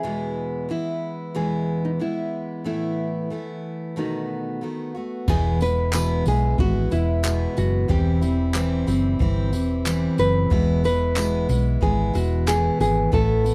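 A straight 4/4 pulse at 92 BPM carries this heartfelt, sunny stretch of acoustic pop in E major, cut from a longer piece. From the start, a bright, full-bodied jumbo steel-string acoustic guitar is picked up front as accompaniment, while a small, fingerpicked nylon-string guitar carries the melody in a warm voice. At 5.3 seconds a round, punchy hollow-body short-scale electric bass enters, dark and amped and sitting up front. A brushed jazz kit joins at the same moment, with dark cymbals, a boomy kick, crash, handclaps and tambourine heard in a natural small room. From 5.9 seconds a separate jingly tambourine sits in the background of a live room. The chords move from E through Asus2 and B7, then E, C/E and back to E, all captured in a dry, close 1970s-style studio sound with light reverb.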